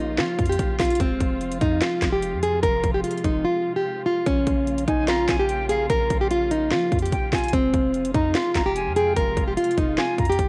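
Cassette-tape grit and light studio reverb color this dark, hard-hitting trap excerpt in Bb dorian, moving at 147 BPM in 4/4 with a half-time feel over a Bbm and Fm progression. Up front, a fingerpicked classical nylon-string guitar carries the melody against distant, woody bowed strings holding lush sustained chords, while a deep, boomy 808-style bass and an electronic kit with hard-clipped kick, sharp snare, handclaps and metallic hats hit hard beneath; the drums drop out from 3.4 to 4.3 seconds. At 4.9 seconds an airy silver concert flute with analog delay adds a second line high above.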